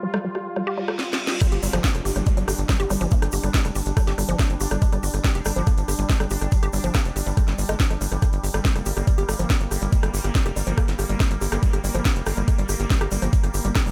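An intense, driving psychedelic trance excerpt at 141 BPM in G phrygian opens with a bubbling, resonant stepped-filter texture holding sustained chords beside a woody, wave-folded pluck riff with tape echo, both pumping under sidechain, while a drum kit with a cracking snare and crisp hats plays a fill behind a reverse cymbal. At 1.4 seconds the drop lands with a knocking electronic kick up front, a tight, saturated sawtooth sequencer bass and a grainy egg shaker set distant in the background. A brief electronic effect flickers at 11.5 seconds within the digital ambience.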